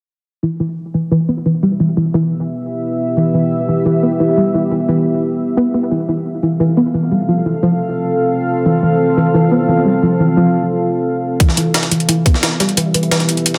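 A lush hall reverb surrounds this mechanical, futuristic excerpt of dark technical drum and bass, where a soft, round pluck with tape echo and a filter sweep plays arpeggios from 0.4 seconds. At 2.0 seconds a deep, moody sawtooth pad with chorus joins on sustained chords, both parts pumping with sidechain as the harmony moves from Em to F and back. At 11.4 seconds the drums arrive: a tight, up-front electronic kick, metallic electronic hi-hats recorded in a small room, and a gritty, pitched-up breakbeat sampler kit with a high-tuned snare and high-pass-filtered hats.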